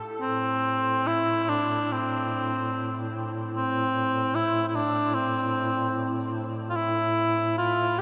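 Longing and mournful, this rubato Caucasian folk lament excerpt opens on a low duduk drone with vibrato, scooped notes and a smooth top, and at 0.2 seconds a close-miked, up-front cor anglais enters with a classical-style melody touched by tape echo, all bathed in a dreamy, reverb-soaked mix with a huge ambient tail.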